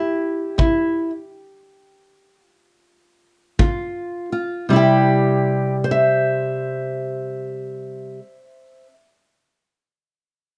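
A dark, boxy, fingerpicked old ladder-braced acoustic guitar opens this gritty, swaggering stretch of acoustic country blues in 12/8 at 53-64 BPM, carrying the melody from C3 to E5 in light reverb, while a distant, punchy kick drum with a rolled-off top enters up front at 0.6 seconds amid a stop, the tempo slowing through the first 4.7 seconds as the C major harmony shifts briefly to Db before the guitar returns to C and plays on until 8.9 seconds.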